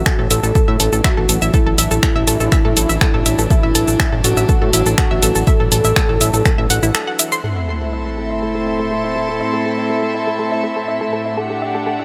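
This excerpt of melodic techno opens with a detuned sawtooth lead carrying a mellow melody over sustained string chords, a thick, saturated bass and a warm, rounded analog pluck running arpeggios through chorus and digital delay, all breathing with sidechain pumping. A punchy, tape-warm electronic kick and an up-front house kit of finger snaps, hi-hat and shaker drive the steady 122 BPM in 4/4, with a melancholic, driving mood in A dorian over a Dadd9/A chord. The soft-attack, sul tasto chamber strings float in a close, pure layer beneath a light reverb and digital ambience. The bass drops out at 6.9 seconds and the drums fall away by 7.4 seconds, when a sub drop lands as an impact and the harmony turns to Am. From there a second, reedy string ensemble with gut-string tone and light vibrato comes up front on a textural part, while filter sweeps move across both the pluck arpeggios and the sustained strings, settling onto Em7/A near the close.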